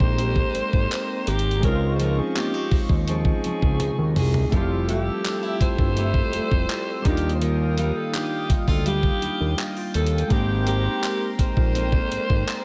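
From the first beat, a compressed, sampler-style soul drum kit with a thumpy kick, handclaps, hi-hat and toms sits up front beside a fat, saturated analog bass, while warm, detuned analog keys with chorus and a filter sweep, a shimmering pulse-width pad pumping in the background, and fingerpicked steel-string acoustic guitar arpeggios support a raspy, growling alto saxophone melody with vibrato, heard distant and roomy, in this smooth, tender contemporary R&B fragment at 83 BPM that moves through Abmaj9, Dbmaj9, Fmaj9 and Ebmaj9 with a drum fill at 3.8 seconds.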